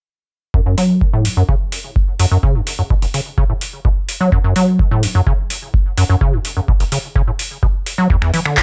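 A straight 4/4 pulse at 127 BPM drives this gritty acid house passage in F# minor, cut from a longer piece. A deep analog kick, re-recorded in a large room, sits up front from 0.5 seconds. From 0.8 seconds a booming analog drum machine joins with finger snaps, handclaps and metallic hi-hats, carrying a tape-warm edge. The square-wave acid bass riff runs from F#1 to F#3, squelchy, hollow and resonant, with a fast-attack filter pluck that decays. Analog chorus and cassette tape colour the bass, and a filter sweep runs across it until the cut at 8.6 seconds, all set in light reverb.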